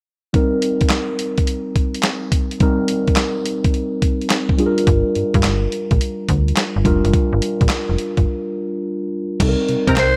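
A gritty, compressed sampler-style drum kit with a thumpy kick, handclaps and a medium-tuned snare drives this punchy, bouncy new jack swing R&B excerpt at 106 BPM in C minor, swinging on 16ths beneath a mellow tine electric piano with phaser moving between Cm7 and Gm7, while a snappy FM slap bass with a metallic attack joins at 4.9 seconds, a tight vintage horn section stabs briefly at 9.9 seconds, and a raspy, growling alto saxophone with scooped notes cuts in up front at 10.0 seconds, the whole mix sitting in light digital reverb.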